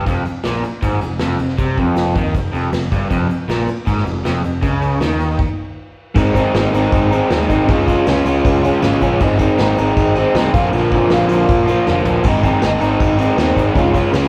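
Garage rock with a menacing, raw mood at 158 BPM, built on a crunchy, double-tracked overdriven guitar riff up front, a round fuzz bass, a dark-toned brush drum kit with a tight kick and dark cymbals, and a grainy, very quiet shaker, all played live in one room with a wet studio reverb and cassette-tape grit, breaking into a stop at 5.4 s before a chord-driven section from 6.2 s and a drum fill at 11.9 s.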